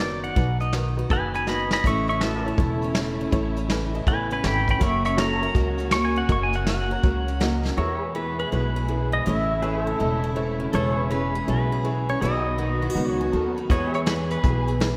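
A swung 4/4 feel drives this down-home, heartfelt honky-tonk and classic country excerpt, where a twangy pedal steel guitar carries the melody through tape echo over a boxy picked acoustic archtop guitar in lush chorus, a jangly tack piano adding honky-tonk fills, a second pedal steel holding sustained background chords, a woody upright bass, a brushed vintage drum kit that plays until 7.7 s and returns at 13.7 s, and a dark bowed string section entering at 1.9 s, the mix soaked in dreamy hall reverb.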